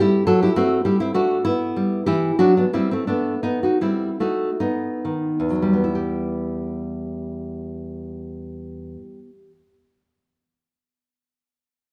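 A wet recital-hall reverb surrounds this short passage cut from a longer classical piece, a baroque-style dance in E minor written in 12/8. A solo nylon-string guitar sits up front, its acoustic, dark tone fingerpicked in a classical manner and ranging from E2 to A4. The pulse moves freely between 42 and 69 BPM in dotted quarters, with a rubato feel and a slowing through the opening six seconds. The harmony opens on F#dim, settles to Em, passes through B, and returns to Em at 6.0 seconds, where a second section begins. The guitar stops at 9.5 seconds, before that section closes at 11.2 seconds, and the mood throughout is introspective and flowing.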